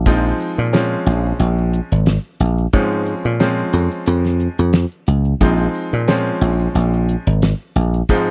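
A dry, thumbed slap bass opens this short excerpt from a longer electric jazz fusion piece, bright and punchy with a foam-muted, direct attack. A fraction of a second later, a damped 1970s drum kit and a clear grand piano join. The kit sounds dark and smooth, with a fat snare, a tight kick and hi-hat under a rolled-off top. The piano supplies accompaniment in a boxy, short-sustained voice, sitting over a single Bbm9 chord for the whole excerpt. The mood is slick and driving, with a lightly swung sixteenth-note feel. All three parts sit up front in a close, dry 1970s-style studio sound with little reverb.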